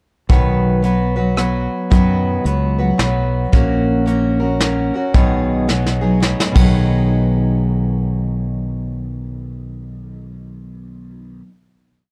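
Honky-tonk and classic country in a swung 3/4 at 112 BPM in B major, this short, complete piece feels nostalgic and heartfelt, with a full-bodied picked dreadnought acoustic guitar strumming open chord shapes up front over a growly, bright fretless electric bass that plays root and fifth lines with walk-ups. A soft brush drum kit with dark cymbals, a medium-tuned snare and a punchy kick keeps a 3/4 groove until a drum fill at 5.7 seconds leads into a final hit at 6.8 seconds. The dark production carries little reverb, so the parts sit close and natural.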